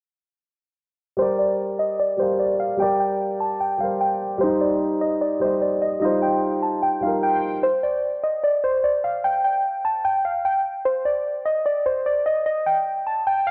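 A half-time 4/4 groove carries this menacing, eerie hip hop fragment, where a dark, warbling, detuned square-and-sawtooth pluck with chorus and filter sweeps leads the melody up front over a warm grand piano accompaniment that drops out at 7.7 seconds, leaving the pluck alone until 13.5 seconds, all wrapped in light reverb and the gritty texture of a cassette-tape recording.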